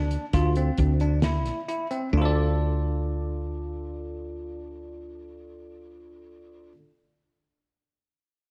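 Set in an uneven seven-beat meter with a straight feel, this short clip cut from a longer progressive instrumental band piece moves with a tense, driving mood. A bell-like tine electric piano sits up front, playing clean, bright arpeggios between C4 and D5 through a lush chorus. Beneath it, a woody fretless electric bass holds a low D2 with a growly, round, hollow-body tone. A damped 70s drum kit of hi-hat, kick drum and snare plays only from 0.1 to 2.0 seconds, sounding dry and dark, with a fat snare, a tight kick and a rolled-off top. The harmony moves from D7sus2 to D minor at 2.1 seconds, and the whole is set in a light reverb.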